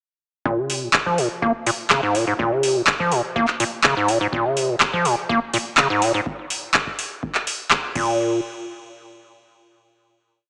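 Acid house at 124 BPM in Bb minor, this short, complete piece has a gritty, trippy mood and a straight 4/4 pulse. A squelchy, hollow square-wave acid bass leads from 0.5 s with an up-front riff between Ab2 and Bb3, its resonant filter sweeping across a 16-step line of accents and slides, pumping against the sidechain and trailing dub echo. Beneath it, a deep, tape-warm electronic kick holds a four-on-the-floor beat, set well back in the mix. A booming analog drum machine sits up front with metallic hats, handclaps on the backbeat, open hats and crash cymbal, sounding as if re-recorded in a large room. The groove runs until 8.2 s, when a final hit rings out into a moderate, lush hall reverb, and the whole mix carries a small-speaker character.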